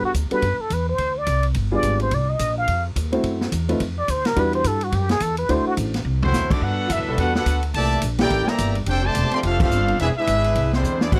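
A dry, close 1970s-style studio sound frames this energetic, brassy big band swing, where a breathy, wah-wah plunger-muted trumpet carries the melody over an intimate baby grand piano, a woody pizzicato upright bass and a swinging drum kit with a punchy kick, until at 6.2 seconds the muted trumpet and piano have given way to a brilliant trumpet section up front with slapback echo and a clear trombone section on a second line, joined from 7.1 seconds by a trombone section holding sustained chords in the background.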